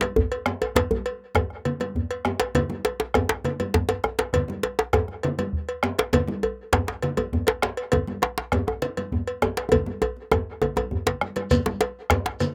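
Recorded outdoors with a light reverb, this powerful, driving cut from a longer West African traditional drum ensemble piece in 12/8 sets a metallic, up-front cowbell and a tight, cracking djembe over a deep, saturated second djembe, ringing congas and a round bombo, with drum fills at 3.9 and 9.7 seconds before a grainy shekere joins at 11.5 seconds.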